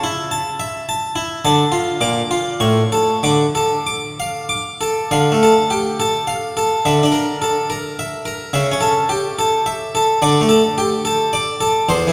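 A solo Flemish-style harpsichord sits up front and close-miked, its plucked tone full and brilliant, with octave strings adding sparkle to a sound that stays dry at the source. This classical, baroque-style suite movement in D minor moves in 3/4 at roughly 93-110 BPM, with a rubato feel that gives it a solemn, introspective character. The instrument ranges from E2 up to D6, and the harmony passes through D minor, B-flat and A before settling back on D minor. A second section begins at 5.1 seconds, bringing richer colours such as a B-flat major seventh over D and an A7 over C-sharp, before closing on an open D. The whole is bathed in a generous church reverb with a long decay, cast around the crisp attack of the harpsichord. It is cut from a longer piece and lasts about 12.1 seconds.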